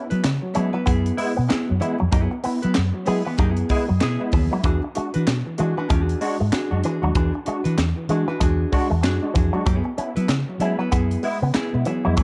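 Funk at 96 BPM with a swung sixteenth feel, this energetic, playful excerpt sets a twangy envelope-filtered guitar riff and barky, lightly overdriven tine electric piano stabs with ensemble chorus over a clean hollow-body archtop accompaniment, a round, foam-muted vintage bass and a tight, up-front drum kit with high-tuned snare, hi-hat and handclaps, while a breathy, whispered tenor saxophone slips in behind during a band accent from 2.1 to 4.7 seconds as the chords move between F#9sus4 and E9 in a dark, small-room mix.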